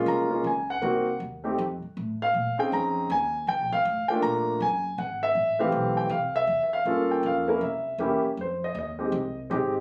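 Cool and smoky, this fragment of a swinging jazz piano trio piece has a swung eighth-note feel. A warm concert grand piano carries the melody, placed up front with a natural tone and a deep low end. An upright bass plays pizzicato underneath, its steel strings giving a woody, growly, thumpy sound that sits well beneath the piano in level. The harmony moves through rich, shadowy colours such as a rootless Gbmaj9, Cm7b5, Bbm11 and a tense C7b9 before settling on Fm9, where the piano launches into a solo at 8.4 seconds over the continuing bass, which carries on to the end of the clip at 9.8 seconds. The sound has the intimate feel of a phone held up in the room, with a moderate booth ambience and a touch of club reverb.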